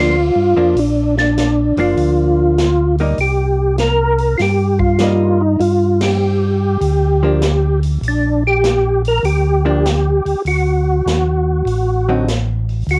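Soul jazz organ trio in G minor at 99 BPM with a bluesy, smoky swing, this cassette home recording features a percussive tonewheel organ carrying the melody through slow rotary speaker and chorus vibrato, a dark, picked hollow-body guitar comping with a tape-worn tone until 12.3 seconds, a round organ bass with audible key click, and a natural acoustic drum kit with a boomy kick entering at 0.8 seconds, all moving through Gm7, Cm7 and Gm to a closing D(b9) with a band accent at 5.9 seconds in light reverb.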